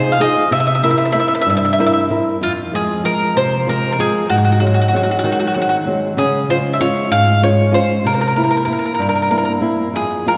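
Italian folk serenade in 6/8 at a loose, rubato 64 BPM, romantic and wistful, moving through F harmonic minor with chords such as Fm7, C7, Ab7 and Db. A bright bowl-back mandolin carries the melody with its picked double strings, while a dark, fingerpicked flamenco guitar accompanies; both sit up front and play throughout this short fragment, which ends at 10.4 s. A lush concert-hall reverb with a long 2.4 s tail surrounds them, giving a sense of listening from further back in the room, and a new passage begins at 2.4 s.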